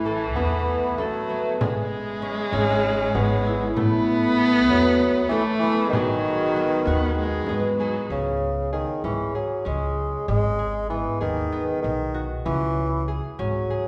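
Rich, bowed viola, reedy harmonium in the background, ringing fingerpicked harp and woody, growly pizzicato upright bass open this urgent, restless chamber piece in 7/8 at 194 BPM (eighths) in C# minor, with a small, bright frame drum tapped softly behind them. At 0.3 seconds a warm solo bassoon takes the melody up front with light vibrato, while the expressive viola carries a close second line with portamento. The drum stops at 7.9 seconds, and at 8.1 seconds the viola and harmonium drop out, leaving bassoon, harp and bass to carry on in a wet recital hall heard from further back in the room.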